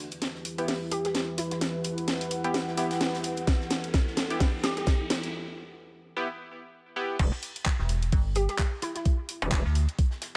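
Lightly reverberant, this swaggering, bouncy bass house cut in E minor at 129 BPM with a swung 16th feel opens on a build-up where a dark analog pad with 12-bit grit, a background riser, a warbling lo-fi tape-like pad, a nasal band-passed chord stab with tape echo and a hollow square pluck sit over a garage drum kit with cracking snare and bright hats and a very quiet small-room indie kit, before an overdriven, knocking electronic kick arrives at 3.5 s and the drop at 7.2 s brings in an aggressive, saturated metallic wobble bass and a digital metallic FM bass, both pumping up front.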